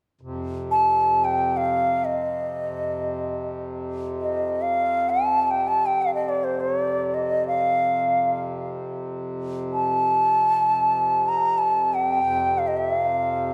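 Indian classical music in free time, this meditative, serene fragment of a longer piece in raga Khamaj on F, tuned slightly low, opens with a reedy, breathing hand-pumped harmonium drone at 0.2 s, joined at 0.7 s by an airy, up-front bamboo bansuri melody with soft attacks and vibrato, all bathed in the lush reverb of a concert hall.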